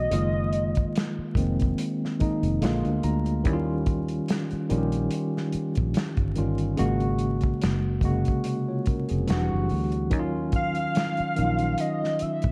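A hollow, woody square lead with chorus and vibrato sings briefly at the start and returns at 10.6 seconds in this late-night, introspective neo-soul R&B excerpt at 72 BPM in Eb dorian, carried by a clean tine electric piano that adds a fill at 2.2 seconds, a round, foam-muted fingered electric bass and a smooth soul drum kit with a punchy kick and medium-tuned snare, the mix set in light reverb with a dark production and vinyl crackle.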